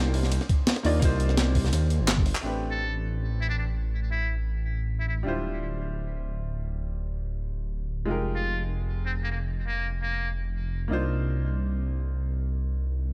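This excerpt from a dreamy, rolling liquid drum and bass piece opens on a drop, with a bright baby grand piano and a dark, deep detuned saw bass sounding from the start at 170 BPM in A minor. The saturated, rumbling bass sits up front, while the piano plays accompaniment with a short sustain and a digital delay. An electronic kick with a thumpy punch joins a compressed, gritty breakbeat kit of snare, hi-hat, ride and handclaps. Both drum parts have a tape-warm colour and small room ambience. The kick drops out at 2.2 seconds, and the kit closes with a drum fill and a band accent before stopping at 2.4 seconds. A muted trumpet then takes the melody, its buzzy, thin tone shaded with vibrato and scooped notes and echoed by digital delay, and it returns at 8.4 seconds. Minor eleventh chords move beneath it, the groove carries a light swing, and the mix sits in digital ambience.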